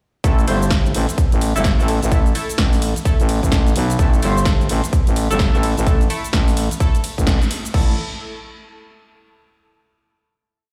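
Gritty and aggressive, this short bass house piece runs at 128 BPM in 4/4 with a swung 16th-note feel, centred on A minor and built almost entirely from a single drop that begins at 0.2 seconds. A punchy electronic kick sits up front in a four-on-the-floor pattern, while a layered dance kit adds a punchy snare on the backbeat, metallic programmed hats, ride, cabasa and crash. A growling, thick FM bass with a fast attack and overdrive plays chopped phrases low in the register, pumping against the kick. Above it, a nasal, band-passed sawtooth stab with detuning, chorus, phaser and tape echo fires bright, syncopated chords, moving one shape in parallel over an A5 harmony. The whole band hits an accent at 7.3 seconds before a final chord rings out from 7.7 seconds, and the mix carries the boom of a big sound system in a bare stone room.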